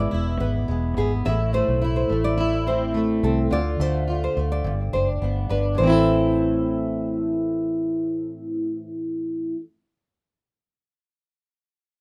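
A double-tracked, fingerpicked steel-string acoustic guitar sits up front with a dark, full-bodied jumbo tone, carrying the accompaniment through this tender, reflective acoustic pop piece at 106 BPM in A harmonic minor, cut from a longer work. A classical nylon-string guitar adds arpeggios coloured by tape echo until 7.4 seconds, while a foam-muted vintage electric bass gives a round, punchy low end under chords moving from E through Am, Dm and G before settling back on Am at 5.8 seconds. Light reverb and a rough home-demo mix give the whole an intimate, unpolished feel.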